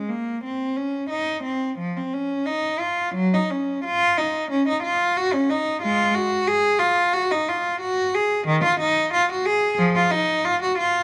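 A single bowed cello, rich and focused with vibrato and a smooth top, plays up front alone from 0.0 to 11.0 seconds in this flowing, solemn classical fragment in the manner of a baroque suite movement, unfolding with rubato around 90 BPM in 4/4 and D-flat major between Eb3 and Ab4, caught by close, detailed microphones in light reverb.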